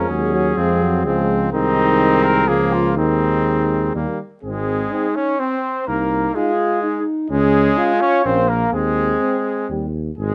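Triumphant and noble, this brief classical brass quintet excerpt in a straight 3/4 sets a mellow, lightly vibrato trumpet melody over a clear, soft-attacked second trumpet, a distant, roomy French horn and a warm trombone sitting in the background, all anchored by an up-front tuba bass line, with light reverb and close, detailed microphones capturing a passage that moves into a new section at 4.4 seconds before horn and trombone drop out at 9.9 seconds.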